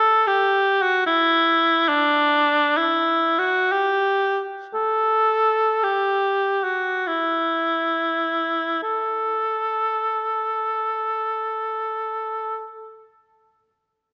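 Yearning and meditative, this free, expressive classical piece for solo cor anglais moves in a rubato 3/4 between 28 and 77 BPM, slowing from 0.7 to 8.8 seconds before a new section begins. The clear, punchy cor anglais sits up front with light vibrato in the range D4 to A4, framed by moderate concert-hall reverb, in a passage cut from a longer work.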